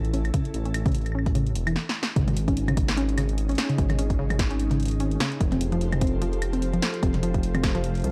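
A glassy FM pad with ensemble chorus and its own reverb, a dark, rumbling detuned saw bass thickened by tube saturation, and a dry analog drum machine with punchy snare, metallic hats, toms and woodblock open this glitchy, wistful IDM excerpt at 148 BPM with a swung 16th-note feel. A warbling, lo-fi pluck enters at 0.1 seconds with chorus and analog delay, and a deep electronic kick follows at 0.3 seconds. A drum fill and stop at 1.8 seconds lead into a second section as the harmony moves from A to G#sus4 and then Fadd9, all in a gritty hardware recording lightly touched by digital ambience.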